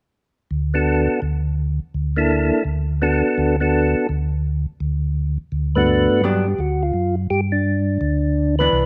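A close, detailed jazz recording with light reverb catches a swinging, greasy groove at 168 BPM, cut from a longer piece, as a mellow, round tonewheel organ with chorus vibrato, key click and a slow rotary speaker carries the bass line from 0.5 seconds. A percussive tonewheel organ, dark and clean with third harmonic percussion through its own slow rotary speaker, takes the melody from 0.7 seconds, and a picked, hollow-body electric jazz guitar adds dark, clean accompaniment from 6.2 seconds as the harmony moves from D6 to G5.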